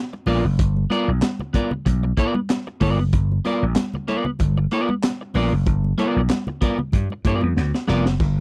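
A funky, gritty groove at 95 BPM in 4/4, cut from a longer funk piece, with a light 16th-note swing and tuning a touch below standard at A4 = 436 Hz. A twangy, picked electric guitar sitting at the edge of break-up carries the accompaniment over a single G7#9 chord, its bright, scooped tone placed up front. A vintage slap bass enters at 0.3 seconds with a growly, punchy, amped sound, holding the low end alongside a crunchy breakbeat kit of kick, snare, hi-hat, handclaps and splash cymbal. The kit sounds saturated and dark, with a high-tuned snare, a tight kick and a rolled-off top, and a drum fill arrives at 7.6 seconds. Congas with a thin skin and soft hands sit in the background, close and dry. The whole take has the dry, close feel of a 1970s studio room with little reverb.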